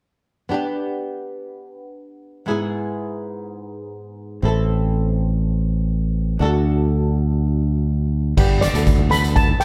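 This sunny, bouncy calypso fragment opens at 0.5 seconds with a fingerpicked, double-tracked flamenco guitar and is joined at 4.4 seconds by a growly, punchy fingered electric bass. At 8.4 seconds a street-band drum kit with a boomy kick and dark cymbals arrives, followed just after by a shimmering steel pan lead with delay and very quiet congas, all set in light studio reverb.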